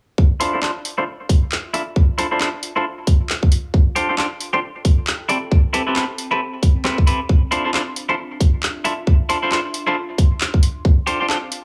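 Twangy, bright clean electric guitar stabs sit up front through a low-pass filter and tape echo, over a tight, up-front electronic kick and a garage kit of handclaps and warm hats swung at 135 BPM, while a warbling, nostalgic lo-fi pad with chorus and sidechain pumping fades in from the background at 1.6 seconds, giving this late-night, skippy UK garage excerpt in D minor its Dm9, G9sus4 and Am9 colour.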